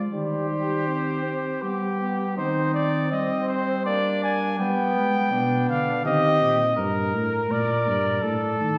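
In a straight 3/4 at 82 BPM, this stately, elegant fragment of an imitative brass canzona in C minor opens with a dark, punchy tuba bass up front, beneath a trumpet melody placed forward in the mix and a second trumpet line with light vibrato and a smooth top. A trombone with vibrato and a vintage color supplies warm accompaniment until 6.8 s, as the harmony moves between C minor and G before coming to rest on an Asus4 at 8.2 s. The ensemble is heard from further back on a scoring stage, wrapped in a wet reverb with a 1.5-second decay.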